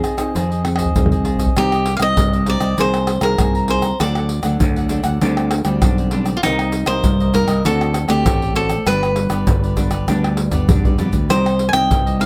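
A straight 4/4 samba and choro groove at 99 BPM rides on an up-front bed of egg shaker, pandeiro, tamborim and deep surdo played with soft hands in a small room, with drum fills at 0.7 and 10.1 seconds. A growly, overdriven fingered electric bass with a bright, amped edge joins at 0.4 seconds. Over it, a crisp, picked cavaquinho carries the nostalgic, bittersweet C minor melody up front, a second cavaquinho adds quieter accompaniment, and a full-bodied, fingerpicked classical nylon-string guitar sits in the background, all within light reverb as the chords move from Fm7 through Cm, D7 and G before returning to Cm.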